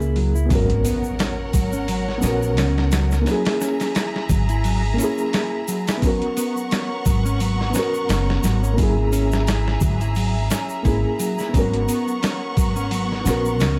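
A swung, unhurried 87 BPM trip hop groove in G# minor opens on a woody pizzicato upright bass on gut strings and close, dry shaker and congas, joined at 0.2 seconds by a compressed, pitched-down, gritty boom bap kit with a thumpy kick and medium-tuned snare, all brooding and smoky in this excerpt from a longer piece. A felt-muted upright piano, boxy and intimate with audible action noise, plays tremolo-and-tape-echo accompaniment while a dark, clean electric guitar arpeggiates through analog chorus, over chords moving between G#m11 and F#9. From 0.5 seconds a lush bowed string section adds sustained chords roughened by 12-bit sampler grit, as an electronic impact sounds in the background until 3.3 seconds.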